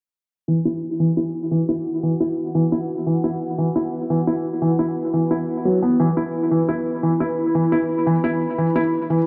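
Tense and dark, this short drum and bass fragment, cut from a longer piece, sits in a straight 4/4 feel. A felt-muted upright piano carries the arpeggios from 0.5 seconds, its tone soft, mellow and intimate, placed up front and shaded by a low-pass filter and tape echo. At 1.5 seconds a dark analog pad enters with sustained chords, a deep, full-bodied sawtooth sound with detuned layers, a sub octave, slow attack and long release, thickened with chorus and sitting lower in the mix than the piano. A filter sweep runs across the whole passage, including on the piano, while the harmony sits on an E5 chord from 0.5 seconds. The production is dark and filtered, bathed in a lush hall reverb with a three-second tail.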